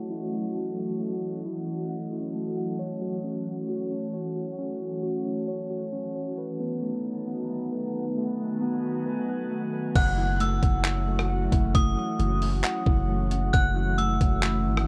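Atmospheric cloud-rap hip hop at 134 BPM in a half-time 4/4 feel, spacious and melancholic, moving from F#m7 to B7 while a filter sweep runs through the first 10 seconds over a digital ambience of worn, warbling cassette tape. A glassy FM pad with ensemble chorus and reverb holds sustained chords beneath intimate, muted felt-like synth keys playing up-front arpeggios through delay, while a drifting texture of calm glass harmonics hovers until 9.9 seconds. At 10.0 seconds a gritty, compressed breakbeat sampler-style kit with a thumpy kick, handclaps, rim clicks, hi-hat and crash arrives alongside a deep, long 808-style sine bass and a ringing, inharmonic metallic FM bell melody high in the register.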